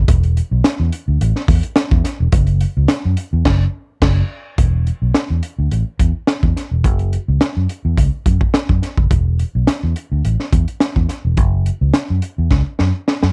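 Fingered electric bass opens this funk excerpt at 0.0 seconds, with a crunchy breakbeat drum kit joining a moment later in a straight 4/4 groove at 106 BPM. The mood is driving and hypnotic, the bass sitting low between E1 and F#2 with a round, amped tone that stays up front. The drums are saturated and gritty, pairing a punchy kick and high-tuned snare with dark cymbals, hi-hat and crash under a rolled-off top. A band accent lands from 3.5 to 4.6 seconds as the opening passage gives way to a new section, and a drum fill closes things out from 12.5 seconds. The sound is dry and close, in the manner of a 1970s studio recording with little reverb.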